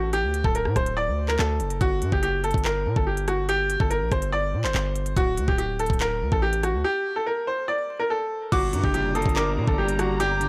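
A bright, woody upright piano leads this cold, tense half-time drill excerpt with tape echo, over a punchy, heavy 808-style bass and a drum kit of knocking kick, crisp hats, handclaps and rim clicks, breaking off at 6.8 seconds before a soft, warbling FM bell, a dark, slightly broken-up electric guitar and lush bowed strings join at 8.5 seconds, all wrapped in a dry, gritty sound with vinyl crackle.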